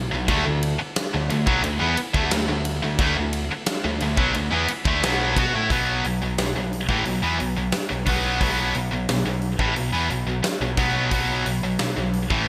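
Hard rock at 89 BPM in 4/4 with a straight feel, this B minor passage is driving and menacing, cut from a longer piece. Two picked electric guitars play the riff together from 0.0 s: a tight distorted guitar sits up front with a bright, distorted edge, while a cranked stack guitar with overdrive and analog chorus glimmers further back. Underneath, a growling picked electric bass adds a round, overdriven low end. The huge arena drum kit enters at 0.3 s with hi-hat, kick, snare and ride, its punchy kick and medium-tuned snare placed up front and bathed in gated reverb for a big-room, natural sound. The harmony rests on D5 before shifting to B5 at 5.7 s, where a new section begins, all set in a moderate plate reverb with bright, 1980s-style digital production.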